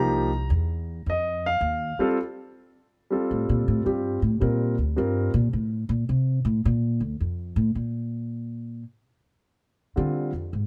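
A dark, warm production with light reverb sets a concert grand piano and an upright bass up front in this short jazz piano trio excerpt, which has a playful, warm mood. At 108 BPM in 4/4 with a swung eighth-note feel in F major, the piano carries the melody and takes the opening solo, its polished, present, intimate tone showing deep bass, long sustain and audible action noise. The woody, pizzicato upright bass on steel strings plays throughout, then takes over as the featured soloist from 2.2 s. The piano drops out at 5.3 s and returns only briefly at 10.0 s, leaving the bass to carry the passage. The harmony moves from Cm7 and F7 through F, Csus2, Am and Bb5 before settling on Fm6.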